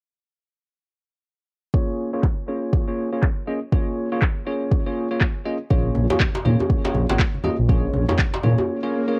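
A bell-like tine electric piano opens this short afro house excerpt, playing bright, clean stabs over a Bbm7 chord in Bb minor pentatonic, colored by analog chorus, tape echo, a low-pass filter, sidechain pumping and a filter sweep. At 121 BPM in 4/4 with a swung sixteenth feel, the mood is driving and hypnotic, and the piano arrives at 1.7 seconds alongside a deep, overdriven electronic kick drum that sits up front, with overdriven electronic handclaps joining just after. A dark detuned saw bass enters at 5.7 seconds, deep, rumbling and beating, with a fast attack and a sustained, saturated tone shaped by sidechain pumping. Very quiet, low-tuned congas with a thick skin appear at the same moment, followed by a tight, cracking djembe. A break comes at 8.7 seconds, where an electronic swell sounds under the last of the piano. The sound is a dry home recording on cassette, with tape grit on the keys, kick and claps.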